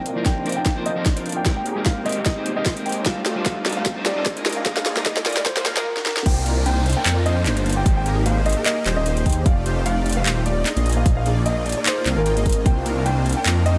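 Lush and dreamy, this future bass excerpt moves at 150 BPM in C minor with a half-time, lightly swung feel, built on a looping progression of Cm11, Abmaj9, F13 and Bb7sus4. A dark, mellow concert grand carries the melody throughout, filtered, pumping against the kick and trailed by delay, while huge, bright supersaw chords ride the riff with ensemble chorus and a filter sweep as the opening builds. Beneath them, a thick, saturated detuned saw bass sits up front, and a hard-clipped electronic kick and a trap kit with a sharp snare, metallic hats, handclaps and crash give the beat a tape-warm punch, with a drum fill running through the build-up. In the first 6.3 seconds, a clean, picked electric guitar adds accompaniment and a very quiet, rich bowed string section holds sustained chords, while from 3.2 seconds a faint riser and downlifter sweep underneath, carrying on to about 9.5 seconds. 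At 6.3 seconds the drop arrives, bringing in an airy lead with vibrato and cassette-tape colour in the background, alongside a round, tine-like FM pluck that warbles very quietly, both spinning arpeggios. The whole mix sits in a light reverb.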